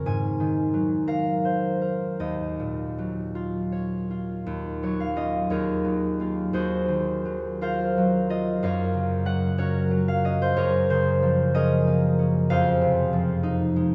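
A rubato 6/8 lilt at roughly 52-64 BPM, counted in dotted quarters, carries this mysterious, gentle classical excerpt for solo concert harp in Eb dorian, whose fingerpicked, ringing, up-front tone spans Eb2 to Ab5 across rich extended chords such as Ab9, Ebm9 and Gbmaj9/Eb, and the whole is bathed in a wet cathedral reverb with a 4.3 s tail that evokes a church or concert hall.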